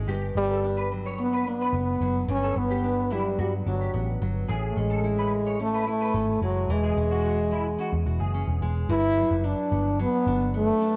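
Hazy and nostalgic, this short bedroom pop excerpt drifts along at 109 BPM in a straight 4/4, cut from a longer indie pop piece. A warm, smooth-topped French horn carries the melody up front in a classical solo style, colored by subtle chorus and tape echo, entering at 0.4 seconds. Beneath it, a bright, fingerpicked nylon-string guitar plays accompaniment with audible finger squeak and a gentle chorus and vibrato sheen, while a vintage muted picked electric bass sits dark, round and foam-muted at the front of the mix. An electric guitar through a small old amp adds a slightly broken-up, lo-fi second line, washed in ensemble chorus and tape echo, until it drops out at 8.5 seconds. The harmony moves through Gmaj7, Amaj7 and E69 before returning to Gmaj7 as a new section begins at 8.9 seconds, all set in light reverb and small room ambience.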